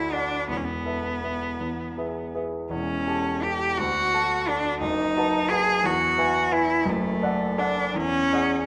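A single bowed cello sings the melody up front in this short fragment of a romantic classical duo, its tone clear and focused, with vibrato colouring the line from A3 to G#4. A grand piano, equally forward and full of long sustain, accompanies it across a broad span from deep E1 bass up to A5, sounding warm and present beneath the cello. The music moves in 6/8 with a rubato feel that lets the phrasing breathe, and the mood is warm and tender. The harmony drifts through suspended and seventh colours, from Esus4 resolving to E, through A7/E, D, B7/F#, E and D/F#, before closing on E9 at 7.9 seconds. Both instruments play throughout the 8.7 seconds, set in a wet recital hall whose reverb adds a soft halo to the tender sound, with the instruments tuned slightly below standard pitch at A4 = 439 Hz.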